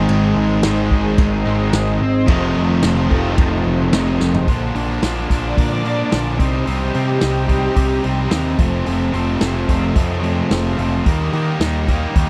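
A dry, close 1970s-style studio sound with light reverb frames this confident, sunny classic rock excerpt, cut from a longer piece and moving at a straight 109 BPM in 4/4. Two bright, overdriven cranked stack guitars open together, one up front carrying the riff throughout and the other, touched with spring reverb, sitting in the background until it drops out at 4.5 s. A growling picked electric bass, overdriven and amped, holds the low end, while a vintage acoustic drum kit with a punchy kick, medium-tuned snare and dark, rolled-off cymbals drives the groove on crash, hi-hat, toms and snare. Behind them a lush sawtooth string machine with a sub octave and ensemble chorus lays down slow-attack sustained chords. A drum fill at 4.2 s ushers the song into Bb major, where the harmony moves through Bb, Cm, F and Eb.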